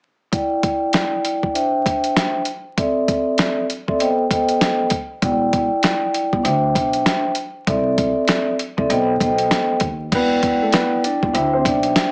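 Swung, gritty sampler-style drums with a thumpy kick, medium-tuned snare, hi-hat and crash drive this reflective yet tough boom-bap hip-hop excerpt, sitting up front with a compressed, tape-colored punch. A mellow, ringing vibraphone played with soft mallets carries the chords through a filter sweep, an upright bass with a woody pizzicato tone joins at 5.2 seconds, and a dark, smooth vintage upright piano takes the melody from 10.1 seconds. Vinyl crackle and a small-speaker quality give the cut a dusty, worn feel.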